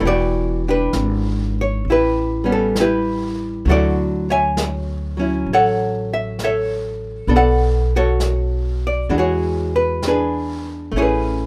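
Swung eighths at a slow 66 BPM in 4/4 give this brief jazz ballad fragment a melancholic, smoky drift, its chords moving from Em9 through A9, Dmaj9, Bm9 and E9 before landing on Amaj9 near 10.9 seconds. Up front, a dark, clean, hollow-body archtop guitar picks the accompaniment, while a woody, thumpy pizzicato upright bass on gut strings sits close beside it. Further back, a distant brush kit of snare and hi-hat sounds roomy and soft in this rough home demo mix with little reverb.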